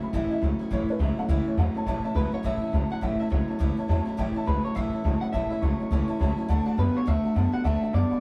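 A moderate studio reverb surrounds a band playing live in one room, and this short cut from a longer piece has a retro, rollicking rockabilly energy at a brisk 208 BPM in 4/4, with a swung eighth-note feel in A major. The thumpy upright bass sits up front with dark, woody gut-string plucks. A bright, twangy electric guitar through a small old amp carries a low picked riff, while a full-bodied jumbo acoustic guitar picks along with fresh strings and audible finger squeak. A detuned, jangly honky-tonk upright piano with a boxy, short-sustain tone takes a solo over the band in the opening 1.9 seconds, then settles into accompaniment. At 2.2 seconds a second, darker and slightly broken-up electric guitar enters with a fingered melody up high, and the harmony moves from A to D at 6.5 seconds.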